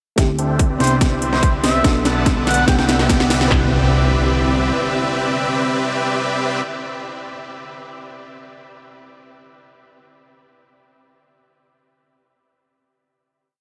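A huge, detuned supersaw riff with sidechain pumping, a low-pass filter sweep and analog delay leads this euphoric, playful future bass piece at 144 BPM in a half-time feel. Beneath it sit a fat analog bass, an overdriven trap kit of hard-clipped kick, clap, sharp snare and metallic hat rolls driving the build until around 3.5 seconds, a very quiet round pluck, a breathy pad, a veiled cup-muted trumpet playing short phrases in the background from 0.8 to 2.9 seconds, and a faint riser and impact, all in a dreamy, reverb-soaked mix.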